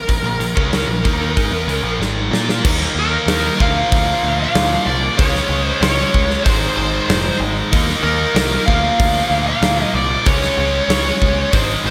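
Swaggering and anthemic, this hard rock passage, cut from a longer piece, sets a distorted high-gain lead guitar melody over riffs from a scooped high-gain guitar with slapback echo and a cranked stack guitar sitting in the background, while a growling, overdriven picked bass and a punchy, up-front rock kit with bright cymbals drive it along. A drum fill at 2.0 seconds leads into a new section at 2.6 seconds, where a very quiet, gritty tonewheel organ joins with thick sustained chords through a slow rotary speaker. A lush hall reverb gives the whole band a big arena sound.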